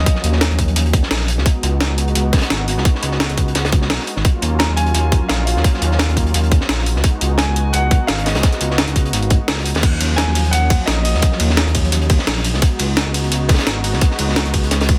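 The rhythm rides a lightly swung sixteenth-note groove in 4/4, built from three drum parts that enter at 0.1 seconds: a tight, layered electronic kick up front; a compressed, pitched-up sampler-style breakbeat kit with crash, ride, hi-hat and a high-tuned snare; and a darker, saturated acoustic break of hi-hat and snare tucked in the background, its top rolled off and high-pass filtering on the hats, snare and room. The result is a lush, dreamy liquid drum and bass passage cut from a longer piece. Underneath, a smooth synth bass blending sawtooth and square waves sustains low notes with vibrato and an evolving tone, sitting prominently in the mix. A detuned analog pad with a soft attack and chorus holds sustained chords alternating between Ebm9 and Db9sus4, pumping against a sidechain. A clear, intimate grand piano with audible action noise and long sustain sounds briefly at the start, then returns at 4.6 seconds for a background melody trailed by dub echo until 11.7 seconds. 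The whole sits in studio reverb on a dense, heavily limited modern master.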